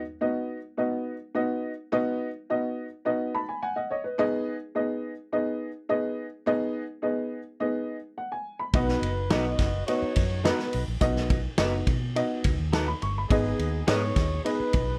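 A worn, woody upright piano opens this joyful, uptempo 1960s-style soul passage on its own, slightly detuned with audible action noise, and adds a short fill at 3.1 seconds that leads into the change from B to G#m. At 8.7 seconds a smooth, jazz-style horn section with vibrato joins on a second line, alongside a round, foam-muted fingered electric bass and a roomy vintage drum kit with a punchy kick and dark cymbals. A slightly broken-up, lo-fi electric guitar adds picked stabs from 9.3 seconds, all set in a dark production with light reverb.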